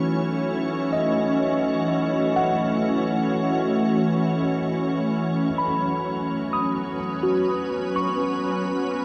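In a straight, unhurried 4/4 at 63 BPM, this serene ambient fragment in F# dorian, tuned to A4 = 441 Hz, moves from F#m7 to Bsus2/F# at 5.5 seconds. A soft, organ-like pad sits up front with pure, bright, warbling sustained chords, thickened by ensemble chorus and its own reverb. Behind it, a worn, slightly out-of-tune tine electric piano plays clean arpeggios through tape echo, all set in a huge, dark wash of reverb with a faint mains hum.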